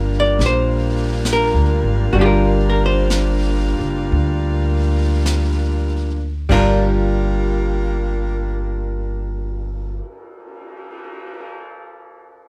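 A dry, close-sounding recording opens this wistful, intimate jazz ballad in G minor, a short cut from a longer piece that swings at a slow 46-73 BPM and slows down over its first 6.5 seconds from a Gm7 chord. A dark, clean hollow-body archtop guitar picks the accompaniment while a mellow saxophone section holds soft-attack chords with vibrato, and an upright bass sits up front with woody, thumpy pizzicato on gut strings. Entering at 0.4 seconds, a brushed drum kit adds airy polish with dark cymbals, a high-tuned snare and a boomy kick, carrying on to 11.4 seconds after the other parts stop around 10 seconds.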